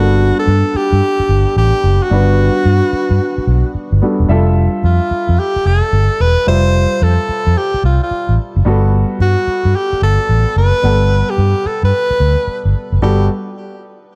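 New jack swing R&B with an upbeat, flirty mood, this short excerpt cut from a longer piece rides a swung sixteenth-note feel in 4/4. A clear tenor saxophone carries the melody up front with a pop-style vibrato, playing solo over the band from the start to 13.3 seconds. Beneath it, a concert grand piano supplies accompaniment with a deep low end, while a vintage fingered electric bass sits up front, foam-muted, amped, round and punchy. The harmony moves from a Gmaj9 chord to Fmaj9 at 4.3 seconds and back to Gmaj9 at 8.7 seconds. Light studio reverb surrounds the parts, and the overall production leans dark and warm.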